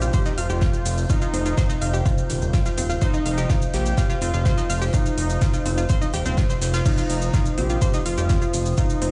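A punchy, overdriven electronic kick drives this straight 4/4 melodic techno at 125 BPM, layered with an overdriven deep house kit with metallic hats, crash and shaker and a very quiet, airy studio kit of hi-hat and snare, while a thick detuned sawtooth bass pumps to the sidechain up front, a chorused analog pluck plays bright arpeggios through delay, a fat analog lead with vibrato, vintage 12-bit sampler grit and digital delay carries the melody over an F7(no3) chord, and a moody, wave-folded pad and a faint, warbling drone sit in the background of this dark, hypnotic excerpt, heard as if through a big sound system in a bare stone room.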